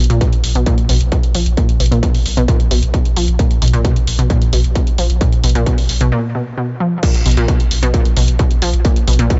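A straight, driving 4/4 pulse at 132 BPM propels this industrial, intense peak-time techno excerpt, where a bright, wave-folded unison pluck riff with tube saturation, delay and sidechain pumping rides over a round sine sub bass on Bb1, an overdriven analog drum machine's hi-hat and crash, and a distorted, layered electronic kick entering at 0.2 s, all kept dry and dark, with a filter sweep running from the start through a break at 6.1 s until the drop lands at 7.0 s.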